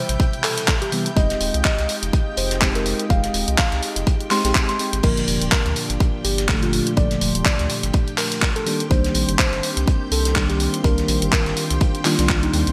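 Warm and deep, this deep house excerpt moves at 124 BPM in G phrygian with a swung sixteenth-note feel, built on a punchy, up-front electronic kick and a tape-warm house kit of handclaps, hi-hat and crash with gated reverb, while a muffled, gritty second kit adds very quiet snare and hi-hat underneath. A round, dark analog bass and soft, full-bodied FM electric piano stabs pump against the kick, with a warbling, wave-folded analog pad sustaining chords over Am7, Fm7, Gm7 and Cm7 and a shimmering string machine of violins adding sustained texture, both in the background. From 0.4 seconds a mellow, clean tine electric piano carries the melody through a delay, all set in a bright 1980s-style digital production with light ambience.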